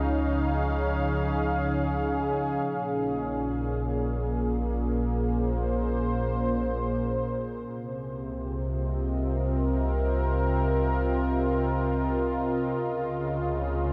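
An ambient passage in free time opens with a detuned sawtooth pad, smooth and warbling with chorus, sitting up front over a deep, round sine sub bass and a nasal, evolving drone with a moving notch that hovers in the background until 2.7 seconds. The pad and bass sustain through the whole 13.9 seconds, moving from Dbadd9 through Bbm7 and Ab6/C before returning to Dbadd9 at 12.8 seconds. A huge, wet reverb and dark, warm production give the piece a spacious, melancholic feel, as if it were lifted from a longer work.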